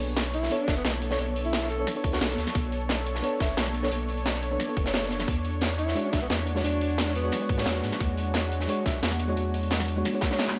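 Dreamy and rolling, this excerpt of liquid drum and bass at 176 BPM in B dorian moves between Bm9 and E13, with a soft, dark FM electric piano with chorus and digital delay over a lush, detuned sawtooth pad that pumps against the beat, a round sine sub bass up front until 10.0 s, a tight, tape-warm electronic kick, a layered garage kit with handclaps and a cracking snare, and a gritty, filtered breakbeat kit, while faint, distant bongos and congas sit in a large room and a mellow alto saxophone with vibrato and delay plays brief solo phrases from 0.3 s and again from 5.8 s, all under light reverb.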